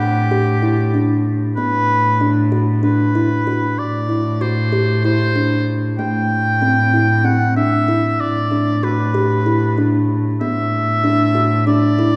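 In a straight 7/8 pulse, this hypnotic, restless contemporary instrumental excerpt sets a woody, ringing kalimba's arpeggios over a dark cello that holds a low A with light vibrato and a gut-string, period-style tone. A bright solo oboe carries the melody up front in a classical manner, while chords move from Em7/A through Bm/A, Am and E7(no3)/A. The trio sits further back in a wet concert hall whose 2.3-second reverb lingers around every note.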